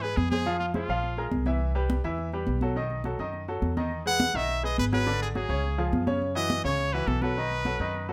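Heard in light reverb, this joyful, danceable salsa passage, cut from a longer piece, moves at 208 BPM in 4/4, with a brilliant, punchy solo trumpet carrying the melody up front with vibrato from 0.0 to 1.3 seconds and again from 4.1 seconds, over a bright, polished grand piano with short sustain, a woody pizzicato upright bass on steel strings, and close, dry, high-tuned congas played with soft hands, as the chords move from Fm through Cmaj7 and Emaj9 to B7.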